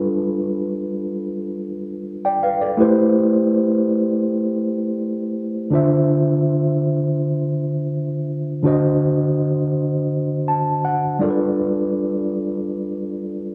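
A lone tine electric piano opens on a G7 chord, its mellow, clean tone sitting up front and heard through built-in speakers, setting a moody, late-night R&B atmosphere. The instrument plays solo throughout this short passage cut from a longer piece, ranging from D3 to A5. The harmony moves through Am7 and Dm9 before darkening on a D7b9 at 8.6 seconds. A brief piano fill arrives at 10.1 seconds, leading back to G7 near the close. The piano carries a cassette tape colouring, and light reverb with a digital ambience gives the home recording a soft sense of space.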